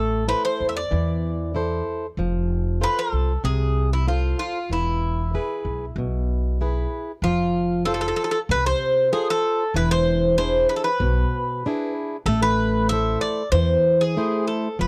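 This is a dry, close recording with the intimate, little-reverb feel of a 1970s studio, a short cut from a longer piece of Greek folk music played by a small bouzouki band. The mood is bittersweet and cool, set in a straight four-beat metre over a minor-leaning progression that moves from Am through F and E before turning to F, E7 and back to Am near 12.3 seconds. The Greek bouzouki carries the melody up front, its paired strings giving a metallic yet mellow picked tone, with some octave-doubled courses adding shimmer. Beside it, a plugged-in acoustic guitar plays fingerpicked swing-style accompaniment with a dark, boxy character. An upright bass anchors the low end with woody, thumpy pizzicato on steel strings. All three parts sound together from start to finish, and the second half of the phrase begins at 7.2 seconds.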